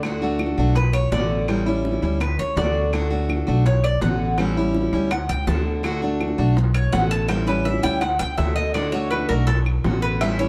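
A Cuban tres stands out once it enters at 0.8 seconds with metallic, up-front arpeggios on its doubled strings, some of them octave-doubled, carrying a solo across this short excerpt from a longer Cuban son and guajira piece. Beneath it, a picked steel-string acoustic guitar gives bright, fresh-stringed accompaniment with audible finger squeak, while a thumpy upright bass with gut strings plucks a dark, woody low end up front. Round, low-tuned bongos played with soft hands sit distant in a large room, and woody claves tick away in the background. At a danceable 165 BPM in straight 4/4 and D major, the harmony cycles through D, Bm7 and A7. Light reverb and a dark, warm production give the whole a warm glow.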